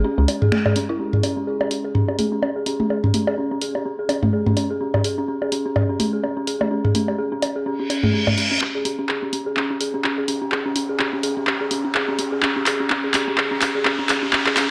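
A dark, detuned synth bell riff with an eerie, inharmonic FM tone, soaked in chorus and tape echo, opens this cool, sparse minimal techno excerpt at 126 BPM over a very quiet swarming drone, snappy house drums and up-front electronic bongos and toms, before the bongos drop out and a reverse cymbal at 7.9 s leads into a build-up from 8.6 s with a drum fill, riser and a filter sweep on the bell, all carried by a gritty cassette-tape sound.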